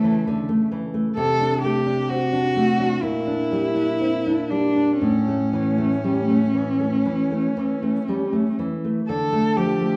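A romantic duo excerpt for cello and classical guitar, elegiac and solemn, moving at a rubato 58-68 BPM in 4/4, where the bowed cello sings the melody up front with vibrato, soft attacks and expressive portamento over a full-bodied, fingerpicked nylon-string guitar accompaniment that passes from A/C# through D7/C and Gm/Bb to A before settling on Dm at 9.1 seconds, all bathed in a wet recital-hall reverb.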